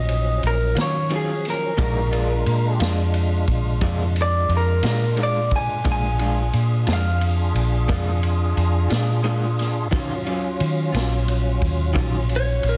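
Slow blues in 12/8 at 59 BPM, mournful and brooding, with a clean, slightly broken-up picked electric guitar soloing from Ab4 to Ab5 over Ebm9 and Bb7 chords, a second small-amp guitar adding tremolo accompaniment from 0.8 to 12.2 seconds, a fat tonewheel organ holding lightly overdriven chords through chorus vibrato and a slow rotary speaker, an up-front, round, foam-muted bass, and a vintage kit of punchy kick, snare and ride with a rolled-off top, all set in light reverb and small-room ambience with a dense, heavily limited modern master.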